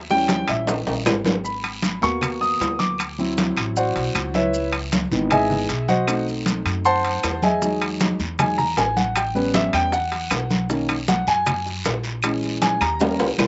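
This driving, fiery Afro-Cuban jazz excerpt in G# minor moves at 156 BPM, with an up-front, natural-sounding grand piano soloing throughout over rich ninth and seventh chords, its tone touched by slapback echo. Underneath, a dark, thumpy gut-string upright bass plays pizzicato. Bright, hard-hand congas, ringing metal-shell timbales, raspy guiro, grainy background maracas and dry claves drive the rhythm, while tight, high-tuned bongos with slapback echo drop out at 1.4 seconds and return at 7.6 seconds. Drum fills open the excerpt and arrive again at 13.0 seconds, all captured with little reverb and a dull top end.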